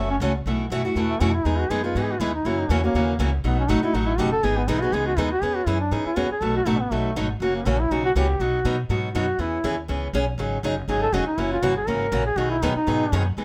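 Acoustic string swing in the jazz manouche style, this lively, swinging excerpt moves at a brisk 242 BPM in E major with a light swing on the eighth notes. A duduk, placed up front, takes a solo for the full 13.4 seconds, its tone warm and vibrato-laden with a folk character. Beside it, a picked steel-string acoustic guitar with a parlour-sized body supplies the accompaniment, also sitting close in the mix. Underneath, a pizzicato upright bass on gut strings gives a woody, thumpy foundation. The harmony runs through two passes of the same section, circling chords such as Emaj7, F#7, B7 and E6 before landing on B6. Close, detailed microphones and light reverb keep the sound intimate and clear.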